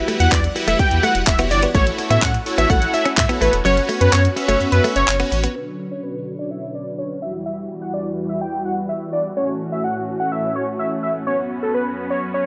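Energetic, driving dance-pop in B minor at 126 BPM, this excerpt opens on a drop where a punchy, layered pop drum kit of handclaps, hi-hat, kick and shaker, a deep sine-and-triangle sub bass with octave, and a twangy, direct-recorded clean electric guitar riff with analog chorus play until the kick mutes at 3.7 s and those three parts stop at 5.5 s, leaving a fat, detuned analog lead melody with vibrato, a bold, warbling sawtooth polysynth and a swirling phased string machine, each sidechain-pumped and low-pass filtered as a filter sweep runs from 5.6 s over chords such as Emadd9, A6 and F#sus4 in light reverb.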